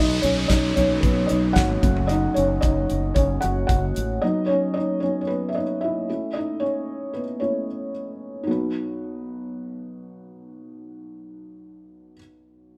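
A felt-muted upright piano, a growly, punchy fretless electric bass, a damped 70s drum kit with a tight kick and medium-tuned snare, and an electronic downlifter all sound together from the start of this warm, anthemic piano-driven pop excerpt at 113 BPM in B mixolydian. After about 4.2 seconds the bass, drums and downlifter drop away, leaving the mellow, intimate piano to carry its solo alone, its thick felt and audible action noise sitting up front. It moves through B, F#m and A chords in a moderate room reverb that gives the feel of a band playing live together.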